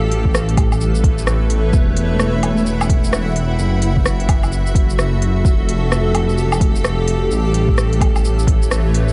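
A dark, detuned saw bass rumbles up front, its beating sawtooth tone pumping with sidechain alongside a blurred, evolving granular pad, cloudy and full-bodied in its built-in reverb. A deep electronic kick and an organic electronic kit of smooth hi-hats, rim clicks, shaker and woodblock, both overdriven and set in a small room, follow a swung 16th-note feel, with a band accent at 8.7 seconds. This rainy, wistful future garage excerpt sits in light digital ambience with vinyl crackle and a dulled top end.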